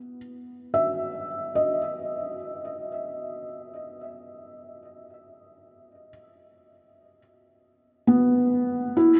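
A felt-muted upright piano plays alone from the very start, its dark, thick-felted tone sitting close and intimate as it rests on a Badd11 chord, with tape echo trailing its notes. This melancholic, reflective ambient fragment drifts in free time, tuned to A4 = 441 Hz, and its 9.2 seconds are bathed in a huge, wet reverb that lingers for 7.9 seconds.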